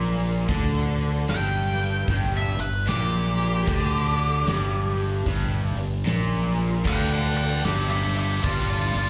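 Blues rock power trio with a southern rock edge, this driving, gritty cut from a longer piece swings at 76 BPM in 4/4 over a G5 chord, sounding like a live gig heard through the venue's PA with club reverb. A bright, lo-fi, double-tracked overdriven guitar riff and a dark, round fuzz bass sitting up front start together. A huge acoustic kit with a fat snare and punchy kick joins at 0.2 seconds, and a nasal lead guitar with a parked wah and slapback echo takes the melody up front from 1.3 seconds.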